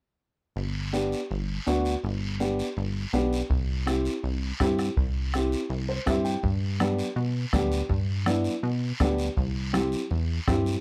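A straight cumbia groove in 4/4 drives this short, sunny and festive cut from a longer piece, with a raspy guiro scraping from a distance, as if set back in a large room, from 0.6 seconds. A punchy, funky analog bass enters at the same moment, its sawtooth and pulse-wave tones shaped by a filter pluck with a fast attack that then decays, sitting up front in the mix. A dark upright piano, mellow, woody and a little boxy, carries the accompaniment close to the listener, moving between G and C chords and playing a brief fill just before the second section begins at 6.4 seconds. The bombo joins at 3.5 seconds with a soft beater and a small-room sound, and ringing, medium-tuned congas with hard hands and a vintage, band-limited character arrive in the background for the closing stretch. The whole recording is dry and close, in the manner of a 1970s studio session, with little reverb.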